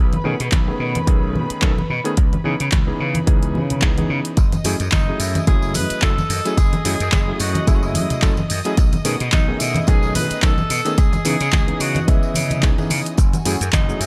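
A dark, veiled section of muted strings holds sustained chords with sidechain pumping, while a growly, overdriven slap bass drives this cosmic, groovy nu-disco excerpt from the start. A punchy, up-front electronic kick arrives at 0.5 seconds over a house kit of cabasa, handclaps and hi-hat, with compressed congas and tambourine in the background and a clangy electric grand piano comping through slapback echo. At 4.9 seconds a forceful, distant tenor saxophone takes the solo melody, coloured by gritty 12-bit sampler texture and tape echo in a small, lightly reverberant room.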